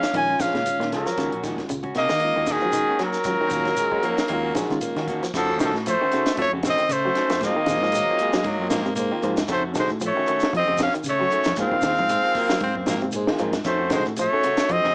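A punchy, up-front trumpet with vibrato carries the melody through this defiant, intense afrobeat excerpt, which is cut from a longer piece and moves with a swung sixteenth-note feel in 4/4. Beneath it, an edgy, forceful alto saxophone plays a second line, and a raspy, gritty baritone saxophone joins between 3.5 and 13.5 seconds, both bathed in plate reverb. Two slightly broken-up electric guitars through a small old amp sit in the background, one fingering twangy arpeggios and the other picking lo-fi stabs, with a reedy, clean electric piano adding accompaniment. A compact cocktail drum kit with a high-tuned snare, punchy kick and rolled-off top anchors the groove alongside a round, amped fingered bass and a grainy shekere. The harmony moves from Bbm7 and Ebm7 into a tense F7b9b13 alternating with Ab13 at 5.3 seconds, and the whole mix carries a light reverb and a small-speaker sound.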